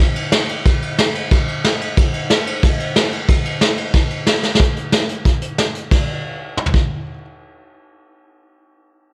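Rowdy and upbeat, this straight 4/4 rock excerpt at 182 BPM features a vintage brush drum kit played with brushes in a small room with a natural sound, its punchy kick, medium-tuned snare, toms and dark hi-hat, ride and crash cymbals sitting up front with a rolled-off top and light reverb, driving from 0.0 seconds through a drum fill at 4.4 seconds before the kit stops at 6.8 seconds.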